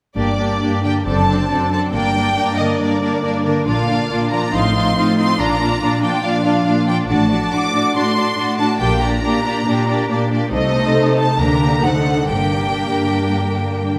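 A stormy, urgent classical passage, cut from a longer piece, unfolds with a flexible, rubato feel in a minor key. A symphonic violin section carries the melody up front with light vibrato and a smooth, even tone, while a second, lush violin line sits beneath it. A dark, woody viola section fills in the accompaniment, and a dark cello section with expressive portamento joins a rich double bass section on the bass, the basses dropping out at 12.7 seconds. In the background, a concert harp plays ringing, thumb-plucked arpeggios. The whole ensemble sits in the wet reverb of a scoring stage, and the harmony moves through tense dominant chords, a diminished chord and a D7b9 before settling back on G minor near 12.3 seconds.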